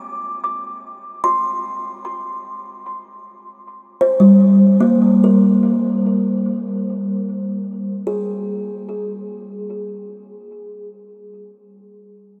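Ambient music in free time, this short excerpt from a longer piece feels peaceful and weightless. A solo kalimba carries everything, plucked by thumb with a woody, hollow-box tone that is dark and smooth, its notes ringing out up front in the mix across a range from G3 to D6. Tape echo trails each pluck, and a huge, wet ambient reverb with a decay of 7.1 seconds surrounds the instrument in a vast wash of space. The harmony rests on C5 from 1.5 seconds, then falls away to an unanchored passage when a second section begins at 8.1 seconds. The kalimba stops at 11.2 seconds, leaving only the lingering reverberant air.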